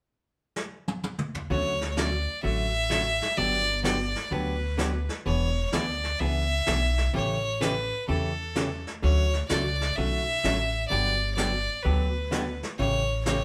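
Down-home and playful, this western swing country excerpt in D major moves at 128 BPM with a swung feel, opening with a brushed drum fill at 0.6 seconds on a mid-forward vintage kit with a rolled-off top. At 1.5 seconds the rest of the band joins: a rich, boxy fiddle carries the melody with light vibrato, a woody, thumpy upright bass on gut strings sits up front, and a dark, clean, compressed archtop guitar picks out the accompaniment over chords such as Dmaj7, Gmaj7, E7 and A7. The group sounds like it is playing live together in one room, wrapped in a wet studio reverb.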